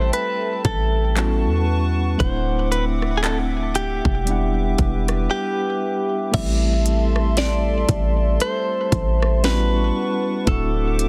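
A clean, picked electric guitar melody with delay leads this late-night, sensual contemporary R&B excerpt, over a tine electric piano, a hollow, airy, flute-like pad with chorus, and a deep, boomy 808-style bass sitting up front. An electronic trap kit with a hard-clipped kick, sharp snare, crisp hats, handclaps, rim clicks and crash enters at 0.1 seconds with a swung sixteenth-note feel, then drops out from 5.3 to 6.3 seconds before the second section. Underneath, the chords move from Am7 through A13 and D9 to Em7, and the sound is dry and dense, with a heavily limited modern master.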